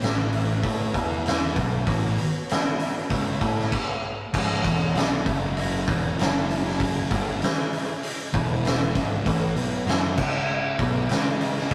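A rough rehearsal-room recording with tube saturation and light reverb carries this brooding, heavy stoner and doom metal excerpt in C# minor, moving at 98 BPM in a straight 4/4. Up front, an oversized low-tuned drum kit in a bright stone room hits with a punchy kick, fat snare, dark cymbals and a gritty, mid-forward tone, its top end rolled off. A thick, double-tracked fuzz guitar drives the riff from C#2 up to A4, sitting in the background beside a growling, overdriven picked bass that digs down to C#1. Underneath, a very quiet, silky vintage string machine holds mellow sustained chords with a slow attack, long release and ensemble chorus. After a stop from 3.7 to 4.3 seconds, the music shifts into a new section over C#m, F#5, C#5, E5 and A5 chords. At that point a bright, crunchy double-tracked overdriven guitar joins very quietly with a second riff.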